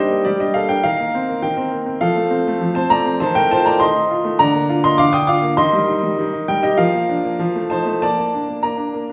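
A wet recital-hall reverb surrounds this short cut from a longer piece, heard from further back in the room, while the baby grand itself sits up front with a clear, intimate tone, long sustain and audible action noise. It is an elegant, playful classical-period sonatina in Bb major at 101 BPM in a straight 4/4, with the solo piano ranging from D3 to Eb6. The harmony opens on G minor and moves through C minor and F7 before settling on Bb at 8.0 seconds.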